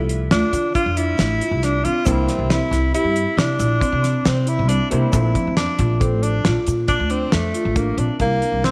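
A breathy alto saxophone carries the second line up front in this bright, driving progressive band piece, played in jazz style with vibrato, subtone and scooped notes. The music moves at 137 BPM in a straight 7/4 in C mixolydian, with the harmony shifting from Dm7 to C7 to Bbmaj9. A pizzicato upright bass with a woody tone sits up front beside a damped 70s drum kit, whose fat snare and tight kick sound dry with a rolled-off top. Close-miked marimba arpeggios played with medium mallets on padauk bars add a full body, while a dark, clean hollow-body jazz guitar, double-tracked, comps quietly in the background and a grainy egg shaker adds a faint texture. At 8.2 s the alto gives way to a punchy tenor saxophone with vibrato and slapback echo, taking the melody in a pop style as the chord returns to C7. An echo chamber reverb gives the short piece, cut from a longer work, a moderate sense of space.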